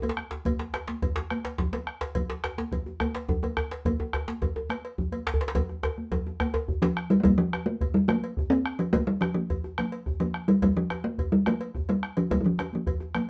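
A straight 12/8 pulse at 142 BPM drives this powerful, festive West African drum ensemble in F major pentatonic, cut from a longer piece, where bright, damped, high-tuned congas, a metallic cowbell, a deep, dark bombo and two tight, cracking djembes (one carrying metal rattles, the other up front until 7.0 s) play through a drum fill spanning 5.6 to 7.2 s, as a short-ringing talking drum steps forward with the melody from 6.8 s, all set in a studio room with moderate reverb.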